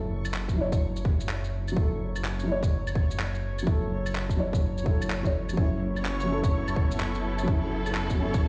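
A swung 126 BPM future garage groove in F# minor, rainy and wistful, carries a felt-muted upright piano with boxy, audible action noise and tape echo over a rumbling detuned saw bass, both pumping to the sidechain, while a reversed, granular swelling texture hovers above, gritty electronic shaker, claves and handclaps enter at 0.2 seconds, a tight up-front kick at 0.5 seconds, and a rich bowed string section with vibrato joins at 5.6 seconds as the F#m7 chord shifts to F#m11, all heard through a cassette-tinged, big-room sound.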